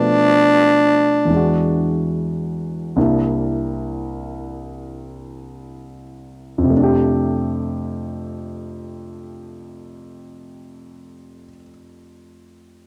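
A breathy, raspy tenor saxophone growls a brief, scooped melodic phrase around D4 at the start of this romantic, late-night jazz ballad in F major, falling silent at 2.1 s. An up-front grand piano with short sustain carries on alone through 12.9 s, the free-time pulse slowing over the opening 6.7 s as the harmony moves from Bm7b5 and E7 through C7 before settling on F69. The sound is dry and close, like a 1970s studio recording, and the passage is cut from a longer piece.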